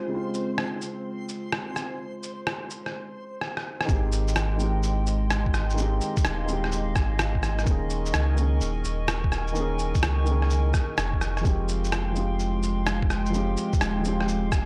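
Future garage at 127 BPM with a swung 4/4 feel, this wistful, melancholic excerpt opens on a felt-muted upright piano with tape echo, a warbling, detuned pad and a reversed, dreamy granular texture that ends at 2.9 s, soon joined by muffled, pitched-down cabasa, rim click and shaker, before a drum fill leads at 3.9 s into a thumpy kick and a round sine sub bass, with piano, pad and bass pumping under the kick through chords of Dbmaj7, Abmaj7, Eb7sus4 and Fmadd9 in a gritty, saturated hardware sound.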